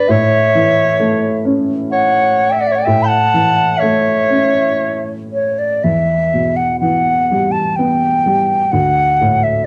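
A rubato Celtic slow air in 3/4 at 56-66 BPM in E dorian, this haunting, longing excerpt from a longer piece sets a bright, airy wooden flute melody with vibrato against a breathy, whispered soprano saxophone second line that stops at 5.3 s, over a dark, boxy, slightly detuned upright piano moving through A, Em and D, all with cassette tape coloring in a modest studio room of a home recording.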